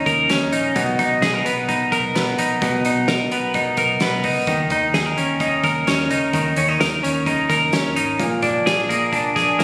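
A steady, straight 4/4 pulse at 129 BPM drives this restless, wistful slice of jangly indie pop, lifted from a longer piece and moving through Eb5, Bmaj7 and Bb7 chords. A bright, twangy twelve-string electric guitar sits up front with clean, picked arpeggios washed in tape echo, while a dark, round, foam-muted fingered electric bass and a loose indie drum kit with a fat snare, tight kick and rolled-off top hold the low end. The sound has a moderate studio reverb and compression, and it was recorded on a phone in the room.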